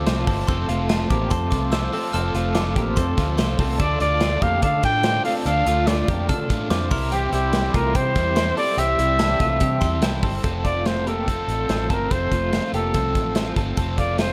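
A breathy, intimate trumpet with vibrato and tube saturation carries the melody up front from 3.8 s in this youthful, nostalgic jangly indie pop excerpt, over picked arpeggios from a clean, compressed twelve-string electric guitar with tremolo, a crunchy overdriven guitar, a dark, round, foam-muted electric bass and a modern drum kit with a tight kick, medium-tuned snare, hi-hat and gated reverb in a small pumping room, while a sparkling glockenspiel with tape echo rings in the background until 10.2 s and a swirling, detuned analog pad with phaser and chorus sustains chords until 10.4 s.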